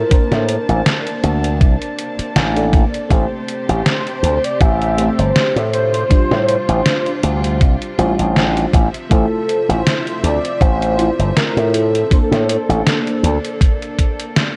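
A hazy, cassette-worn haze of light digital ambience hangs over this nostalgic vaporwave excerpt, cut from a longer piece and moving at an unhurried pace with a gentle sixteenth-note swing. A velvety sawtooth-and-triangle synth lead carries the melody with chorus, vibrato and tape echo, floating over a lush, dreamy FM electric piano with a soft pad layer that adds detuned, mellow shimmer through analog chorus and delay. Further back, a smooth studio string section holds bowed chords, while the harmony drifts from Bbmaj9/A through Am7, G7sus4/A and Fmaj7/A before returning to Bbmaj9/A at 12.1 seconds. Up front, a bright, punchy slap bass with an envelope filter and tube saturation drives the low end until it drops out at 13.4 seconds. A thumpy electronic kick sits loudest in the mix, joined by a detuned 8-bit drum machine whose tape-toned hi-hat and medium-tuned snare are bathed in gated reverb, both sounding re-recorded in a small room.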